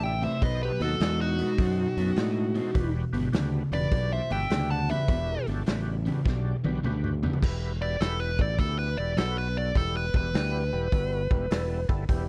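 Blues rock with a southern rock edge, this gritty, smoky 103 BPM swung excerpt in E minor opens with a nasal, parked-wah lead guitar and a slightly broken-up second lead over a growly, up-front overdriven bass, a distorted double-tracked fuzz riff that drops out at 7.4 seconds after a drum fill, a thick tonewheel organ with key click and slow rotary speaker, and a raw, dry garage drum kit with a tight kick, before the wah guitar takes a solo over the final stretch.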